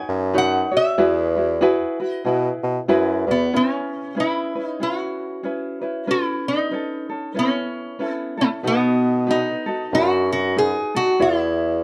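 Swung eighths at a relaxed 94 BPM in 4/4 carry this languid, dreamy Hawaiian piece in E major, cut from a longer work, where a metallic, nasal lap resonator guitar, played with slide and fingerpicks and bathed in plate reverb, sings the melody over a light, fingerpicked tenor ukulele, while a smooth bassoon with gentle vibrato supplies the bass, falling away at 3.5 seconds and returning at 8.6 seconds, all within a dark, lightly reverberant production.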